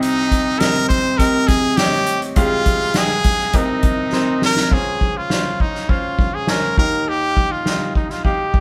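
Heard live in a stone room with moderate reverb, this driving, dramatic piano-driven pop excerpt at 102 BPM in straight 4/4 puts a forceful, brilliant trumpet up front on the melody with light vibrato and scooped notes, over an intimate, woody upright piano with audible action noise and long sustain, while a distant, roomy soft-mallet drum kit with a punchy kick and medium-tuned snare plays a fill from 4.1 to 4.7 seconds as the chords move from Cm through Fmadd9/C and Cm7 to Dbmaj7 and Ebadd9.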